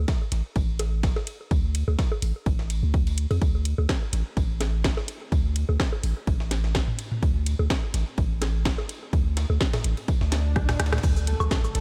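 A swung 126 BPM groove in 4/4 drives this cool, quirky minimal techno excerpt, anchored by an up-front, punchy electronic kick and a deep sine sub bass with a pitch-drop attack and sidechain pumping. Layered on top are a tape-warm house kit with a cracking snare, metallic hats, rim click, shaker and crash, a gritty, pitched-up sampler-style breakbeat kit with a high-tuned snare and filtered, pumping hats and cymbals, and analog-flavoured bongos, toms and woodblock with delay. The mix stays dry until a background swell from 10.4 s and a drum fill lead to an impact at 11.0 s, where a bright, chorused, pulsing gated triangle texture enters.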